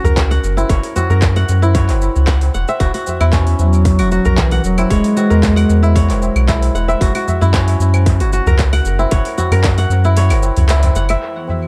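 Organic downtempo with a peaceful, earthy mood: bright, fingerpicked kora arpeggios ring into dub echo over a round, up-front sine sub bass, low-tuned tabla in the background, a tight, tape-warm electronic kick and an overdriven deep house kit of claves, handclaps, metallic hats and shaker, while a dark duduk with vibrato sings a brief tape-echoed solo from 3.3 s, the kick drops out at 10.2 s, and a smooth, detuned sawtooth pad with chorus and sidechain pumping arrives at 11.2 s in an echo-heavy mix with spring reverb.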